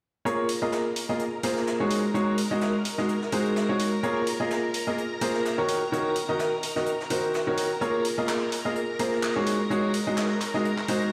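A bright upright piano riff leads this soulful, bittersweet slice of piano house. The piano sits up front with a woody, brilliant tone, softened by a low-pass filter and trailed by dub echo, moving through Bbm7, Ab7sus4 and Ebm7 chords. Behind it, a vintage string machine holds shimmering, slow-attack violin chords thickened by ensemble chorus. A jazz brush kit with a medium-tuned snare and hi-hat stays in the background, its natural small-room sound thinned by high-pass filtering. From 0.5 seconds a layered electronic house kit of handclaps and hi-hat adds a tape-warm pulse, and the swung sixteenths give the groove a loose lilt. The whole mix sits in a lush hall reverb and sounds as if played on a big sound system in a bare stone room, cut from a longer piece.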